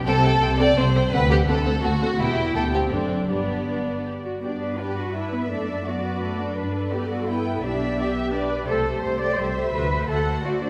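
In a quick, rubato 3/4 at 169 BPM, this spirited, graceful classical-period movement for string orchestra in G major, cut from a longer piece, sets a muted studio violin section with a smooth top on the melody over a lush, up-front symphonic violin section on the second line, lush violas in accompaniment, and cellos and an up-front double bass section sharing the bass, every part played con sordino for a dark, veiled sound and bathed in the reverb of a church or concert hall.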